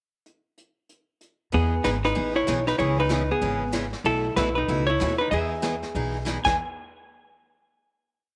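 A brushed drum kit opens this short, swinging country and western swing piece with a one-bar pickup, its brushes sweeping on the snare beneath dark cymbals, sitting back in the mix. At 1.5 seconds the full band arrives: a clean, compressed hollow-body electric guitar takes the melody up front, stating motif-based period phrases that are partly doubled in sixths. A woody upright bass on gut strings thumps out a two-beat root-and-fifth line with walk-ups, while a bright, boxy parlour acoustic guitar picks a steady four-to-the-bar rhythm. The down-home harmony moves through Emaj7, C#m7 and B7sus4 before settling back on Emaj7. A moderate spring reverb and small-room ambience surround the band, and the piece closes on a final hit at 6.6 seconds.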